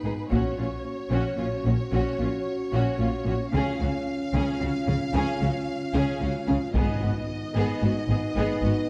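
Bowed strings and a tight, dark French horn section holding sustained chords open this dark, relentless orchestral film-score build-up in 12/8, with clear, distant violins carrying the melody over a second violin line, smooth viola accompaniment, and a focused cello and double bass foundation, the strings lush with vibrato. Close, dry taiko struck with heavy sticks enters at 0.3 s and returns at 6.7 s, joined at 6.8 s by round, soft-mallet timpani sitting in the background. A moderate scoring-stage reverb gives the dark, warm production its sense of space, and the passage is cut from a longer piece.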